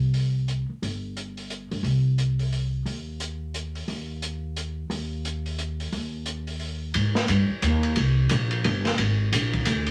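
Pizzicato upright bass opens this short cut from a longer modal jazz piece, with an open jazz drum kit joining at 0.1 s. The mood is spiritual and searching, set at a brisk 176 BPM in 3/4 with a swung eighth-note feel. Up front, the steel-strung bass sounds woody and growly, moving between G1 and Ab2. The drum kit of ride cymbal, hi-hat, snare and kick sits a touch lower in the mix and has a small-room, smooth character, with dark cymbals, a medium-tuned snare, a boomy kick and a rolled-off top end. A wet studio reverb adds a short tail, and the music moves into a new section at 7.0 s before the cut ends at 9.9 s.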